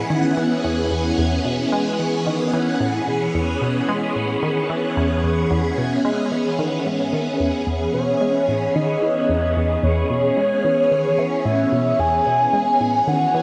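Cosmic and expansive, this ambient, sequencer-driven space music moves at 111 BPM in E major, cut from a longer piece, with a bright, swirling phased string machine holding sustained E6 chords up front through ensemble chorus and phaser, while a tight sequenced synth drives a mellow, filter-plucked sawtooth riff down low with chorus and delay. At 7.9 s a dark, shimmering pulse-width lead enters with a retro melody, carrying vibrato, chorus and delay. A wet plate reverb and heavy echo bathe the mix, which was recorded to cassette tape.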